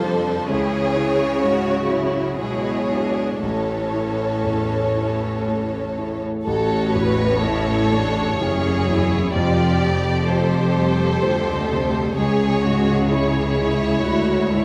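A scoring-stage reverb gives space to this hopeful, moving cinematic film-score excerpt in A major at 63 BPM in a rubato 3/4, where an up-front, expressive violin section with portamento carries a second line over a background viola section, a long-sustaining grand piano and a distant, lush cello section on the bass, before a smooth violin melody and a focused, distant double bass section join at 6.5 seconds as the chords move from C#m through A and Fsus2 back to C#m.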